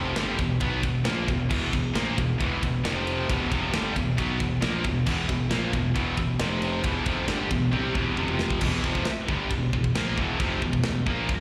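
Heavy metal in E phrygian at 135 BPM, heavy and aggressive, heard as a live gig through the venue's PA with recital-hall reverb, where an up-front high-gain guitar with slapback echo leads a riff over a very quiet second distorted guitar and a double-tracked background guitar, a growly fuzz-overdriven fingered bass, and a tight, big-room acoustic drum kit with bright cymbals that enters at 0.2 s and plays a fill from 7.7 to 8.6 s as the Em and F5 riff moves into a new section.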